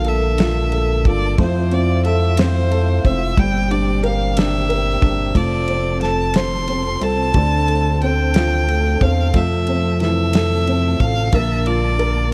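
A clear, biting solo violin sings the melody with vibrato and an analog delay, over a woody upright piano, a mellow tonewheel organ whirling through a fast rotary speaker, a glossy chorused synth bass placed up front, and a loose acoustic drum kit with a fat snare, tight kick and ride cymbal. This melancholic, dramatic pop ballad in a straight six-eight moves through chords such as Bbmaj7, Gm and Dm7 in a studio ambience. The drums stop at 12.1 seconds, just before this fragment of a longer piece ends.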